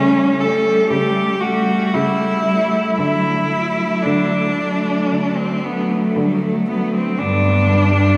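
A wet cathedral reverb with a 4.6-second decay surrounds this short cut from a lyrical, tender classical piece for four bowed cellos, unfolding at 58 BPM in 4/4 with a rubato feel over chords of A7/C#, D and G. Up front yet slightly distant, a clear, smooth and even cello with vibrato carries the melody, while a rich, expressive cello sings a second line in the background with vibrato and portamento. Beneath them, a third clear, smooth and even cello with vibrato supplies the accompaniment, and a warm, distant cello anchors the bass with its own vibrato and portamento.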